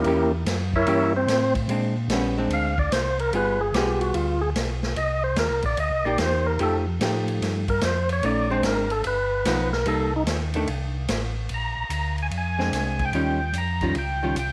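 A percussive tonewheel organ carries the melody from the first moment, alongside the rest of the trio, with its key click and third-harmonic percussion, a slow rotary speaker and a light overdrive giving it a clear, warm edge. This excerpt is soulful, swinging soul jazz in an organ trio setting at 147 BPM in 4/4, with a swing on the eighth notes and a Bb mixolydian colour. The organ solo runs until 11.5 seconds, moving over changes such as Edim7, Bb9, G7b9 and Cm7 before the passage shifts to a new section built on Bb9 and Eb9. Underneath, a second, mellow tonewheel organ supplies a round, dark bass line with chorus vibrato and slow rotary, sitting up front alongside the lead. A picked, hollow-body archtop guitar adds dark, clean accompaniment, while a distant big-band drum kit swings on hi-hat, ride, snare and a boomy kick, its cymbals dusky and its top end rolled off. A moderate echo chamber reverb and small room ambience lend the whole trio a roomy, intimate feel.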